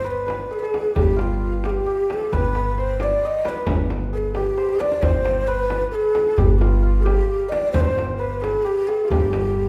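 A breathy, hollow ney carries the melody up front in this stately, passionate Persian modal excerpt in G dastgah homayun at 89 BPM in 6/8, over a shimmering hammered santur second line, a woody pizzicato upright bass on G1, a tight tombak in the background and a deep frame drum, with a drum fill at 4.6 seconds, all set in a wet recital hall reverb.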